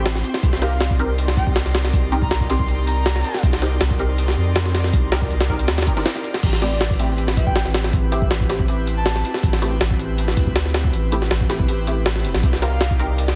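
Straight 4/4 jungle breaks from a gritty, pitched-up sampler kit with a thumpy kick, high-tuned snare, hi-hat and crash drive this nostalgic, raw drum and bass excerpt, sitting up front beside a round, soft dub sub bass, while muted filtered chord stabs with phaser and dub echo and an airy detuned pad with chorus move from Cm7 to Am7, a dark wind-like noise texture drifts in the background until 6.4 seconds, and a breathy flute-like synth lead with vibrato and echo surfaces in short phrases from 0.6 seconds, all within a heavily compressed, radio-like sound with light digital ambience.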